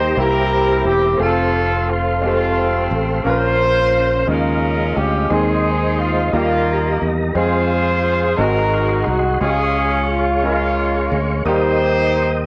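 Jubilant and hopeful, this slow gospel passage in 6/8 sets a clear, lightly vibrato-tinged horn section up front on the melody, with a polished grand piano and a smooth tonewheel organ, its slow rotary speaker and key click softly audible, sustaining chords in the background over a round, punchy fingered electric bass. The horns, piano and organ carry the cassette tape character of a home recording in a small room with light reverb.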